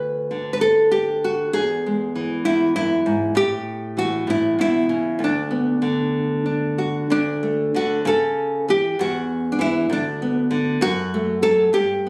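A fingerpicked nylon-string guitar opens this pastoral folk fragment, playing alone in a loose, rubato 6/8 with a classical, full-bodied tone and audible finger squeak. Its peaceful progression moves through E, A and D6 before a second passage from 7.1 seconds turns to D5, A, Bm/D and F#m, cut from a longer piece at 12.1 seconds. The guitar sits up front in a moderate studio reverb, with the compressed sound of a phone recording in the room.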